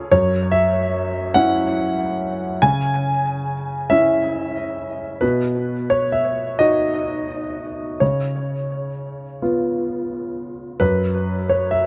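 The rhythm moves in a rubato 6/8, with the pulse felt in dotted quarters at roughly 42-50 BPM, giving this short passage, cut from a longer piece, a slow, flexible sway. It is neoclassical minimalist piano in C# minor, melancholic and wistful in mood, played entirely by a solo concert grand piano spanning F#2 to G#5. The piano's tone is clear and natural, with a deep bass, and it sits up front, touched by tape echo. The harmony passes from F#5 through C#m and B to C#7 before the opening material returns at 10.8 s, just before the recording ends at 11.9 s. Close, detailed microphones and light reverb keep the sound intimate.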